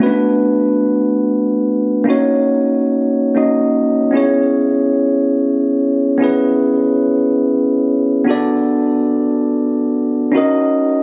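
Late-night and soulful, this amapiano fragment in free time, cut from a longer piece, features a solo bell-like, bright tine electric piano played clean and up front with light reverb, moving through Bm7, D#m7 and C#m7 chords across 11.0 seconds, captured on a phone in the room with studio ambience and compression.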